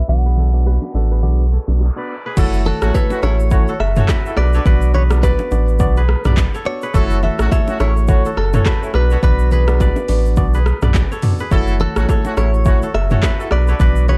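This sultry, mellow afrobeats excerpt in F# minor opens at 105 BPM with a swung sixteenth feel, as a filter sweep and a faint background noise sweep move through the mix over a round, deep sine sub bass sitting up front, a crisp fingerpicked kora riff ringing brightly, and a clean, compressed electric guitar melody carrying a subtle chorus. A tine electric piano heard through its built-in speakers and very quiet, saturated congas and bongos played with soft hands fill in the accompaniment as the chords move between B minor and F# minor seventh. At 2.4 seconds the deep house drum kit arrives up front, an overdriven, layered electronic kit with a deep kick, metallic hats, handclaps, rim clicks, shaker, toms and crash cymbal, re-recorded in a large room. A distant, roomy horn section with light vibrato enters alongside it as a second line, adding a warm ensemble glow. The production is dark and low-pass filtered with little reverb, keeping the groove close and intimate.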